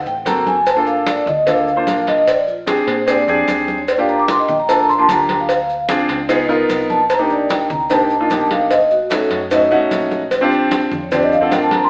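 An AM-radio-toned recording of a band playing live in a stone room carries this driving, fiery Afro-Cuban jazz excerpt in G minor at 149 BPM, where an up-front, mellow vibraphone with fast motor vibrato solos over clear, intimate baby grand piano chords with audible action noise, a dark, round hollow-body electric bass, ringing hard-hand congas, a saturated, low-tuned cowbell and grainy maracas in the background, moving through rich extended harmony from Gm9 to a closing Bb69.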